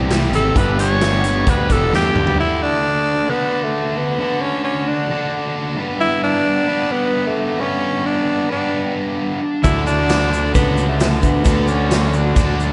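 A raspy, gritty tenor saxophone leads this driving, swaggering classic rock passage, cut from a longer piece, with scooped notes, light vibrato and a smooth top that keep it clear and up front. Around it, the full band of growly fuzz bass, punchy vintage drums, two bright, compressed distorted electric guitars and a very quiet, full-bodied steel-string acoustic guitar charges through the opening, and the drums play a fill from 1.9 seconds. At 2.4 seconds the band thins to the saxophone and the louder distorted guitar, whose riff carries a slapback echo. At 9.6 seconds the bass, drums, second electric guitar and acoustic guitar return, joined by a grainy egg shaker in the background. The mix has a big arena sound in a moderate concert hall reverb, with a rounded top end.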